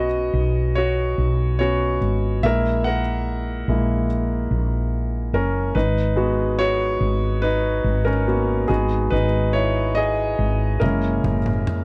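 A clear, intimate concert grand piano and a dark, growly fretless electric bass open this heartfelt, hopeful pop ballad together, the piano close enough that its action noise and deep low end come through. The dry, up-front sound keeps the focus on the piano's solo part, which moves through a sequence of suspended, seventh and major-seventh chords over the round, woody bass. At 10.8 seconds a brief acoustic tom fill enters with a pumping, hall-like room sound, leading onward as this fragment of a longer piece breaks off.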